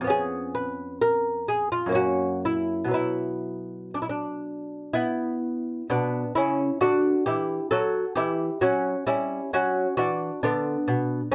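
Grave and flowing, this short excerpt from a longer baroque-style dance in B minor sets a solo lute in a rubato 3/4 at roughly 59-67 BPM. The fingerpicked gut strings, doubled in courses with some octave pairs, sound delicate and close, moving from C#7/E# through F#7 to Bm by 2.9 seconds before the second section at 5.9 seconds settles back on Bm/D. A light reverb and a dark, warm production wrap the instrument in a soft, intimate glow.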